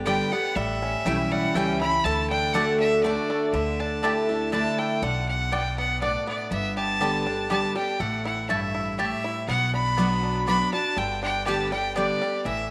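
A clear fiddle with light vibrato and an airy bow sits up front and carries the melody in this driving, rustic bluegrass excerpt at 121 BPM in 3/4 and D major, taking a solo over the opening 3.5 seconds. A bright, full-bodied picked dreadnought guitar shares the front with its accompaniment, while a twangy fingerpicked banjo plays arpeggios, a woody, thumpy pizzicato upright bass holds the low end, and a double-strung mandolin adds stabs from the background. The band sits in a wet spring reverb with studio ambience, moving through chords such as G, A7, Bm and Gadd9.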